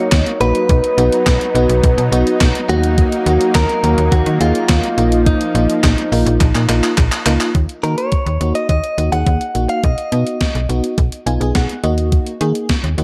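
Cool and nocturnal, this synth-pop piece moves at a steady 105 BPM in Eb minor, with a dark production cut from a longer work. A gated 80s digital drum machine sits up front with a thumpy kick, an overdriven gated-reverb snare, handclaps and hi-hat, matched by a snappy, slap-like FM bass with a metallic attack. Above them, a dreamy FM electric piano layered with a soft pad shimmers with chorus and tremolo, while a thick, nasal unison pad of detuned sawtooth voices holds sustained chords until 7.5 seconds. A bright, clean electric guitar, recorded direct and compressed, carries the melody through spring reverb and tape echo until 11.0 seconds, when the electric piano takes a short fill. A drum fill leads into the second section at 7.5 seconds, and the harmony cycles through Ebm, B and Bbsus4.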